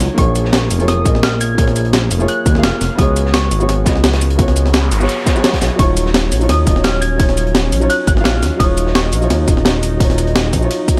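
Liquid drum and bass at 171 BPM, soulful and lush, built on a gritty, compressed sampler-style breakbeat kit up front, a dark, saturated breakbeat kit tucked in the background behind it, and a punchy overdriven electronic kick, with a smooth gliding synth bass, a boxy felt-muted upright piano carrying dub echo and audible action noise, a gentle, round pluck melody drifting through chorus and echo, a background noise sweep at 4.6 seconds, and a thick, warbling unison pad that enters at 5.8 seconds as the chords move from Bbm7 through Db7sus4 to Ebm9, all in a fairly dry mix.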